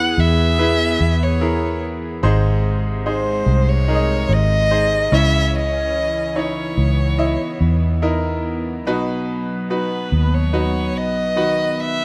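A tender, emotional pop ballad in B major at 73 BPM, cut from a longer piece and heard as a rough home demo with light reverb. A focused, boxy solo violin carries the melody up front with vibrato and plate reverb, over a brilliant grand piano whose action noise is audible and notes ring with long sustain, while a soft-attack studio string section holds floating sul tasto chords. A dark, round, foam-muted fingered electric bass sits up front beneath the chords E, G#, C#madd9 and B across all 12.0 seconds.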